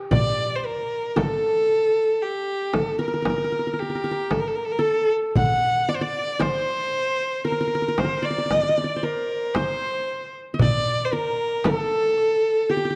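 A qanun opens this cut from a longer Arabic maqam ensemble piece, its fingerpicked triple strings sounding bright-edged as it plays a second line set back in the mix. Almost at once a single bowed violin takes the melody up front, its tone rich and focused, with vibrato and a smooth top, moving in the same G4 to F#5 range as the qanun. Beneath them, a metal-shell darbuka struck with hard hands sounds crisp, close and dry, while a large frame drum adds a deep sound with a small-room character. The music moves in a straight 10/8 with a longing, melancholic mood, staying within a single section. The frame drum stops at 11.9 seconds and the darbuka at 12.3 seconds, leaving violin and qanun to carry on to 13.0 seconds within a moderate scoring-stage reverb and a dark, warm production.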